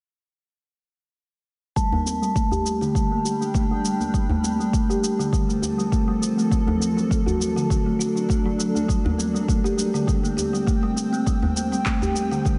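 The recording sits in a moderate, lush hall reverb with a softened top end, a short stretch cut from a longer organic downtempo piece with an earthy mood and a lightly swung 4/4 feel. From 1.8 seconds a woody, hollow-sounding kalimba plays up front, its mellow fingertip plucks ringing through arpeggios shaped by a low-pass filter sweep and a delay. A deep electronic kick sits forward beside it in a small room, joined by produced shaker and handclaps further back and an acoustic djembe heard in a live room. From 2.9 seconds a granular cloud pad holds blurred, slowly evolving chords with a slow attack and long release, breathing under sidechain pumping and its own built-in reverb. In the background a quartz singing bowl adds a pure, meditative tone with slow beating, as the harmony moves from G minor through F and D back to G minor.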